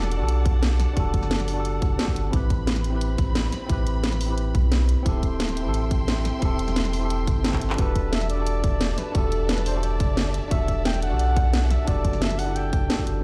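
Liquid drum and bass with a melancholic, lush mood, this piece is cut from a longer track and rolls along in a straight four-beat feel over a cycle of rich minor-ninth, eleventh and suspended chords. A worn, slightly out-of-tune tine electric piano plays the accompaniment through a combo amp with a digital delay, while a bowed studio string section holds sustained chords with expressive vibrato and a smooth top. A deep, round sine sub bass sits up front, and a tight electronic kick arrives at 0.5 seconds beneath a tape-warm garage kit of handclaps, hi-hat and a cracking snare. After a drum fill at 7.5 seconds, a breathy, close-miked flugelhorn takes the melody at 7.8 seconds in a mellow jazz style, its solo line carried on digital delay. The mix sounds as if it were played on a big sound system in a bare room, wrapped in a large studio reverb and digital ambience.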